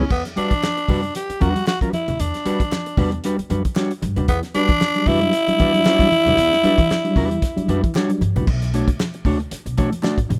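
A swung 16th-note funk groove at 115 BPM in 4/4 carries this cool excerpt, where a raspy, growling tenor saxophone leads up front over a dark, clean fingered electric guitar with warbly pitch drift, a woody pizzicato upright bass, a dry soul drum kit with a fat snare, tight kick and dark cymbals, soft close congas, very quiet hollow handclaps, and a flute-like tonewheel organ with key click, chorus vibrato and fast rotary speaker that stabs in the background at the very start and again from 4.3 seconds, all in a rough home demo mix with little reverb as the chords move from Em9 to Bm9 at 8.5 seconds.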